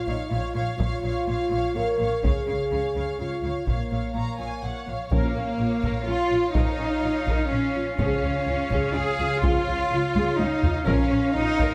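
Dark and dramatic, this epic orchestral film-score excerpt in Bb minor moves at 125 BPM in a straight 3/4, with a taiko ensemble struck with heavy sticks driving beneath lush, up-front cellos, woody double basses, mellow French horns, a viola section and two violin lines, the melody sitting in the background. At 5.1 s a soft-attacked, distant woodwind section and a clear, punchy trombone section add sustained chords while hard-mallet timpani strike briefly, and a drum fill arrives at 10.2 s. The strings carry vibrato throughout, and the whole ensemble sits in a moderate recital-hall reverb.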